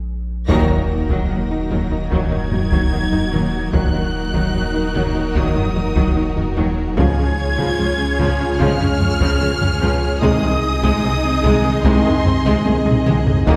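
A cinematic hybrid orchestral and electronic film score cue with a futuristic, relentless mood, where close, dry taiko struck with hard sticks and a punchy, pitch-dropping sub bass drive beneath lush bowed violins carrying a focused vibrato melody and a second line, violas in the background, very quiet cellos and distant double basses, mellow French horns and trombones holding sustained chords, a calm, evolving organ-like pad with ensemble chorus, a twangy, bright resonator pluck spinning arpeggios, and a huge, dark impact from 0.5 to 3.7 seconds, all set back in a scoring stage reverb over chords moving from Ebm to Db to Ab/C.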